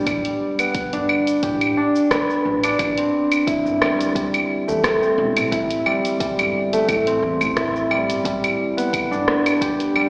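Thumb-plucked concert harp arpeggios ring up front through a digital delay over a woody, dark pizzicato upright bass, joined at 0.1 seconds by an up-front deep house drum kit of cabasa, claves, hi-hat and rim click and a deep electronic kick set in the background, all in a mystical, warm organic downtempo cut at 88 BPM in A minor with a light 16th-note swing, moving from G to Am7 and back to G, soaked in a lush hall reverb and heard through an AM-radio haze as if played on a big sound system in a bare room.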